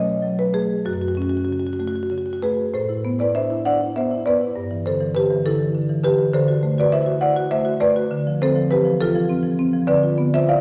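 A solo marimba, played with medium mallets on padauk bars, carries this hypnotic, flowing contemporary classical passage, cut from a longer piece. Its tone is woody and boxy, placed up front, and it moves freely in a rubato 6/8 through colored chords such as F#madd9, G69 and Fmaj7/D. The whole sits in a wet scoring-stage reverb with a dark, rounded top, and a second section opens at 2.7 seconds.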